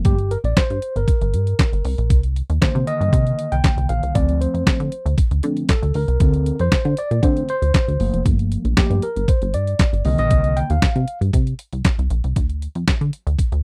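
A dry, close recording with little reverb frames this danceable, late-night slice of early-eighties boogie funk, cut from a longer piece and moving at 117 BPM in 4/4 in C dorian. A clean tine electric piano, heard through its built-in speakers and placed up front, takes the featured role over chords such as Gm, Cm9 and Bbmaj9 until 11.2 seconds. Meanwhile a punchy, dark analog bass with sawtooth and pulse-wave bite, a filter pluck and a moving notch drives the low end, and a detuned 8-bit drum machine with a thumpy kick, medium-tuned snare, hi-hat and handclaps adds a tape-warm, sampler-style character through to 13.6 seconds.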